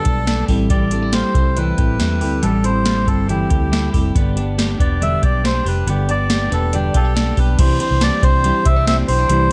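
Jangly indie pop at 139 BPM in C major, nostalgic and breezy, this short cut from a longer piece sets a reedy, breathy melodica melody over a fingerpicked, full-bodied steel-string acoustic guitar and warm twelve-string electric arpeggios colored by tube saturation and phaser, while a muted, round fingered bass joins an overdriven vintage rhythm box with a deep kick, crisp snare and metallic hats that sits up front in a dark, lightly reverberant mix that moves from Am7 to G before settling on Cadd9 at 7.6 seconds.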